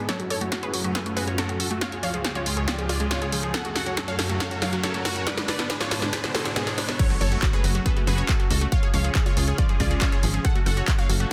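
Uplifting trance at 139 BPM in F# harmonic minor, soaring and euphoric, where a bright, detuned sawtooth pluck carries the melody through tape echo over a thick, chorused and phased pad and a lush background pluck arpeggio with delay, the synths pumping to the sidechain as a filter sweep, a drum fill and a very quiet riser build toward the drop at 7.0 s, where the impact lands and a tight, driving sequencer bass of sawtooth and square wave enters at 7.2 s beneath an up-front, tape-warm layered kick and a punchy analog drum machine of snare, handclaps, hi-hat and crash cymbal, all within a dense, heavily limited master and moderate room reverb.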